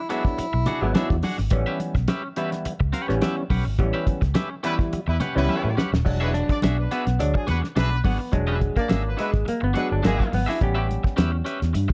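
Funk at 106 BPM with a strutting, energetic feel, where a vibrato-laden tenor saxophone with scooped notes sounds only briefly at the start over a cloth-damped, thuddy drum kit with a fat snare and dark cymbals, a round, foam-muted fingered bass up front, a twangy, slightly broken-up guitar shimmering with harmonic tremolo, very quiet congas, and a stringy overdriven clav through a phaser that takes a solo from 6.1 s after a band accent and drum fill, while a tight, clear horn section adds a second line from 4.6 s, all within a dark production with light reverb.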